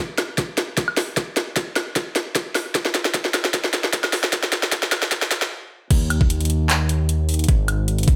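A fat, detuned sawtooth bass bursts in at the drop at 5.9 seconds, sitting up front with a fast attack, long sustain, a filter sweep and sidechain pumping as it moves between Ab1 and Eb2. This short cut from a longer future bass track runs at 152 BPM in a half-time 4/4 feel, with a 53% swing on the sixteenths and a bright, euphoric mood. Before the drop, a build-up carries a drum fill from a trap kit, with a sharp snare, metallic hi-hats, handclaps, woodblock and crash cymbal, all upfront and touched with studio reverb. Beneath it, a layered electronic kick with a knocking, overdriven tone, re-recorded in a small room, drives the fill until a brief stop at 5.5 seconds clears space for the drop. The whole recording carries light reverb and a high-pass filter.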